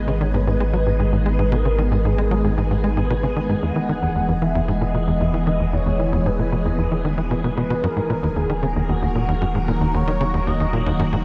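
Cosmic and hypnotic, this 114 BPM excerpt of ambient, sequencer-driven space music in G# minor sets a tight, punchy, nasal sawtooth sequencer bass riff with delay over a deep, round sine sub bass, beneath swirling vintage string-machine chords bathed in ensemble chorus and phaser and a smooth, warbling portamento lead with vibrato, chorus and delay, all moving through G#m, E and D#m in a dark production with a huge ambient reverb.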